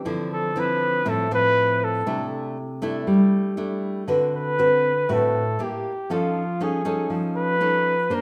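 A fingerpicked nylon-string guitar opens this short, sophisticated bossa nova fragment, cut from a longer piece, its brilliant, classical-toned accompaniment sitting up front in a straight 4/4. Within a moment, at 0.3 seconds, a warm flugelhorn enters to carry the melody, taking a jazz-style solo over the guitar with a soft attack, vibrato and scooped notes that give the line a romantic, tender character. Both instruments stay close and present for the full 8.2 seconds, the horn keeping to a compact middle register while the guitar spans a broader range beneath it. The harmony moves through rich, colorful changes from Dm9 to C69 and D6, then tightens through Edim/Bb into a tense F7alt. A wet, large-studio reverb surrounds the pair, lending the intimate performance a spacious, polished glow.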